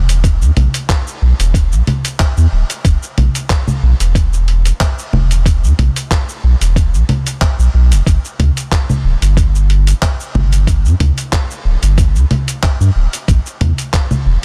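Dense, heavily limited and bathed in digital ambience, this warm, earthy organic downtempo excerpt sets a deep, round, sine-toned sub bass up front, pumping under sidechain, beneath a gritty, compressed sampler-style soul kit of congas, handclaps, hi-hat and shaker and a thumpy electronic kick, over a lightly swung 16th-note feel.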